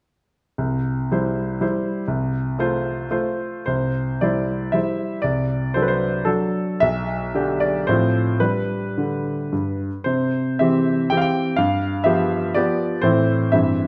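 A clear, up-front grand piano sits in a wet recital hall reverb, giving this short fragment of a longer piece a graceful, rustic character. It is a romantic, classical-style triple-time dance in 3/4 and C major, played solo with dotted rhythms and free rubato, moving between about 102 and 130 BPM across a range from B1 to G5. After an opening phrase on C and F over C, a longer second section wanders through D7 over C, G and F before settling toward C and G7, closing on A minor at 13.0 seconds.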